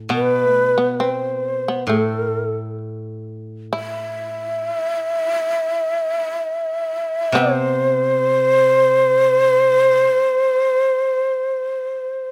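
Japanese traditional chamber music, meditative and still, moves in an unhurried rubato two-beat metre in this short cut from a longer piece. A breathy, mellow bamboo shakuhachi carries the melody up front with vibrato, soft attacks and rolled-off highs. Beneath it, a buzzing, percussive, plectrum-plucked shamisen adds a powerful second line, while a dry, woody koto played with fingerpicks supplies low accompaniment until 10.1 seconds, all captured by close, detailed microphones with light reverb and a shift to a new section at 3.8 seconds.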